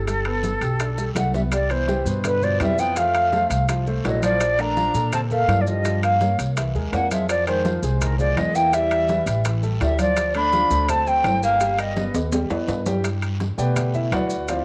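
Afro-Cuban jazz with a sunny, sophisticated mood, heard in a short passage cut from a longer piece and carried by a brisk, straight 4/4 pulse. A breathy, hollow silver concert flute with vibrato and a soft attack takes the melody up front until about 12.2 seconds, while a clear tenor saxophone plays a second line in the background from 1.2 seconds. A grand piano with a natural tone and a cassette-tape character supplies the accompaniment, then takes a solo from 13.0 seconds as the chords turn to a final Gmaj9. A woody pizzicato upright bass on steel strings sits up front, and a percussion section fills out the groove: thick-skinned, saturated congas, tight high-tuned bongos, ringing metal-shelled timbales, a raspy guiro and grainy, band-limited maracas. Drum fills mark the entry into the long middle passage and its close, and the whole take has the intimate feel of a home cassette recording in a small room with moderate spring reverb.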